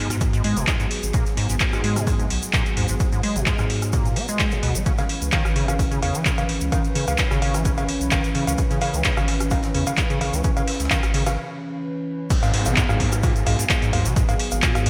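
A squelchy, resonant acid bass riff with overdrive and a filter sweep drives this hypnotic acid house excerpt, set over a deep saturated sub bass, a punchy tape-toned electronic kick, an up-front booming drum machine with metallic hats, cowbell, handclaps, rim clicks and crashes in gated reverb, a grainy close shaker, a very quiet dark jazz kit of ride and snare, and a mellow pumping pad with sampler grit, before a break at 11.4 s gives way to a drop at 12.3 s where a background downlifter enters, all in a lush hall with bright 1980s-style digital sheen.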